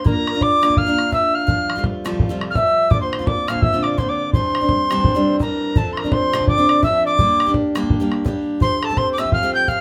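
A bright, pure-toned wooden whistle carries the melody of this cheerful, swinging Celtic hornpipe from the very start, its straight, tongued notes and chiff sitting close and up front, while a warm wooden flute with vibrato and a crisp attack plays a second line beneath it. Picked steel-string acoustic guitar, bright and forward, supplies the accompaniment, and an open, boomy bodhran joins at 0.1 s. The band plays together live in a small, reverberant room in this short cut from a longer tune.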